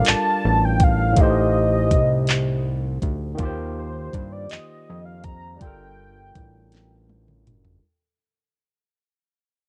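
A slow six-eight groove carries this late-night, yearning R&B fragment: a smooth, up-front drum kit of knocking kick, fat snare, metallic hats, handclaps and toms roughened by 12-bit sampler grit and tape sits with a thick, detuned, saturated analog bass, while a bright, barky electric piano, lightly overdriven through a combo amp, accompanies over Gm9, Am7b5 and Eb69, and a velvety, chorused synth lead with vibrato carries the melody, the lightly reverberant cassette home recording fading throughout until a drum fill arrives at 6.7 s.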